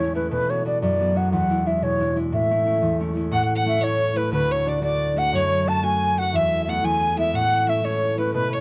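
An airy, woody baroque flute with vibrato and a crisp attack carries a cheerful, lively Celtic folk melody in 6/8 over ringing, fingerpicked concert harp set up front, and at 3.3 seconds a clear, smooth bowed fiddle played by a single player joins softly beneath as a second line, all captured in a dry, close 1970s-style studio sound.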